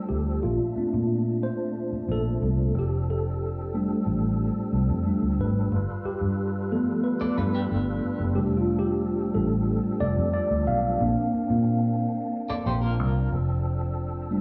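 A mellow, clean tine electric piano carries this warm, romantic soul excerpt at 91 BPM in F major, sounding up front through its built-in speakers over chords moving from Bbmaj9 through F6, G9 and Bbadd9. A dark, foam-muted fingered electric bass sits round and forward beneath it, while a fat tonewheel organ holds sustained chords in the background with light overdrive, chorus vibrato, key click and a slow rotary speaker. An electric guitar through a small old amp adds a slightly broken-up, picked riff with tremolo at 7.2 and 12.5 seconds, all in a small, fairly dry room.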